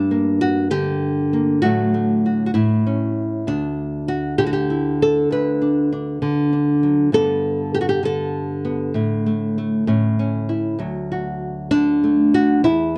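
Close, detailed microphones and a light reverb give this short folk recording an intimate, present quality, with the single guitar sitting up front. A solo nylon-string guitar, fingerpicked in 6/8, carries the whole piece. Its tone is dark and small, and a touch of finger squeak adds a human quality. The harmony moves from G minor through suspended and added-note shapes such as Dsus2 and Gadd9, with the guitar ranging from a low D2 up to B4. Around 10.8 seconds the music settles onto a plain D chord as a new passage begins. The mood is pastoral and nostalgic, and the clip is cut from a longer piece, ending at 13.0 seconds.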